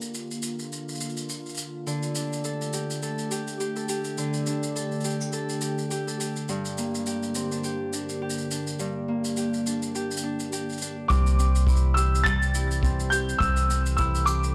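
A bright, ringing Celtic harp enters at 1.9 seconds with fingerpicked arpeggios through a digital delay, over a warbling, lo-fi tape-like pad and distant, roomy shaker and finger snaps, in this delicate, wistful folktronica piece at 104 BPM with a light swing in G dorian; at 11.1 seconds a soft, felt-muted upright piano melody high in its register, a woody pizzicato upright bass up front and a tight kick drum in the background join in.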